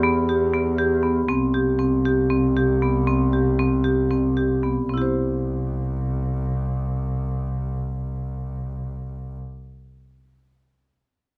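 Closely miked and detailed with light reverb, this short cut from a longer contemporary chamber piece in an uneven 7/8 at 231 BPM (eighths) in C major feels hopeful and restless, as a dark, percussive marimba played with hard mallets runs arpeggios up front over a rich, bowed double bass with vibrato, the music slowing between 1.3 and 4.9 seconds while the harmony moves from E minor through C5 to a C chord.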